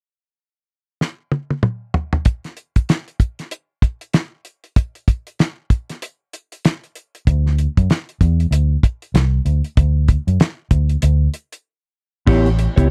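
A damped 1970s drum kit opens this energetic, playful funk excerpt with a fill at 1.0 seconds, its fat snare, tight kick, hi-hat, toms and crash sitting dry and up front over a swung sixteenth-note feel. A dark, round, foam-muted fingered electric bass joins at 7.3 seconds with an amped, vintage tone, and after a break the track lands on an A9 chord at 12.3 seconds, where a mellow, clean electric guitar enters with a touch of spring reverb. The whole thing has the close, dry sound of a 1970s studio and is cut from a longer piece.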